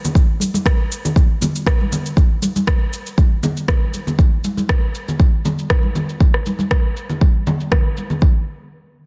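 A deep, layered electronic kick sits up front from 0.2 seconds, with a tape-saturated, small-room character driving this spiritual, warm house groove at 119 BPM in 4/4 with a light 16th-note swing. Bright acoustic congas with a live-room feel play throughout, beside a low-pass-filtered electronic shaker and rim click that sit further back, while a filter sweep runs across the drums. A light reverb surrounds the dense, heavily limited modern mix in this short cut from a longer piece.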